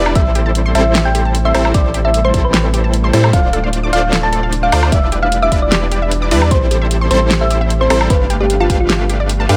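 Lightly reverberant and polished, this emotional, lush future bass excerpt rides a half-time feel. A round, tine-like thumb-piano-like synth pluck carries the melody with chorus, delay and sidechain pumping over a punchy, detuned supersaw stab riff. Two arpeggiating unison plucks sit beneath it, one very quiet and full-bodied, the other bright and warbling in the background. A very quiet ethereal pad holds sustained chords, a deep, saturated sub bass sits up front, and a pop drum kit adds a fat snare, metallic hats and woodblock, while a tape-warm electronic kick drops out at 8.9 seconds.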